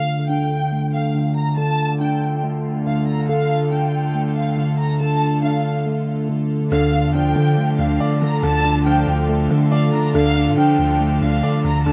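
A mellow, up-front tine electric piano plays phased, delayed arpeggios in this dark, ominous half-time hip hop cut, over floating, distant sul tasto string chords and a lush violin section with vibrato carrying a second line; a filter sweep runs until 6.7 s, when a clear, intimate grand piano with audible action noise and a deep, long sine 808 bass enter, and the piece is heard in a wet small room with a rough home-demo mix.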